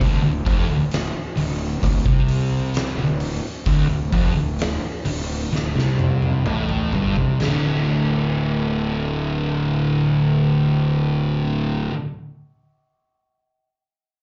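Stoner and doom metal at a brooding, sludgy 64 BPM in D minor, this short cut from a longer piece pairs an up-front, dark fuzz guitar riff with a second, very quiet fuzz guitar, a bright, growly overdriven fingered bass and an oversized low-tuned kit with a fat snare, punchy kick and dark cymbals in a pumping stone room, slowing down into a drum fill from 5.5 to 7.4 seconds before the drums stop at 7.6 seconds and the guitars and bass settle on a D5 chord, all heard through a club PA with light reverb and a muffled top end.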